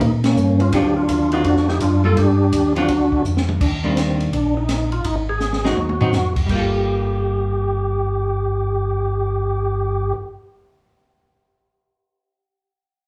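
A percussive tonewheel organ carries the melody up front in this smoky, late-night soul jazz organ trio, its fat, lightly overdriven tone marked by key click, second harmonic percussion, chorus vibrato and a slow rotary speaker set in plate reverb. Beneath it, a second tonewheel organ plays the bass, mellow, round and clean, also turning through a slow rotary speaker. A compact cocktail drum kit with a high-tuned snare and punchy kick swings at 167 BPM in 4/4, sitting lower in the mix and stopping at 9.3 seconds, with fills around 3.2 and 5.4 seconds. A hollow-body archtop guitar, picked and clean, joins as accompaniment at 0.7 seconds and rings on past the others. The harmony in G minor moves through dominant and major seventh colours before settling on a minor ninth, and the band is heard from further back in a studio room in this fragment cut from a longer piece.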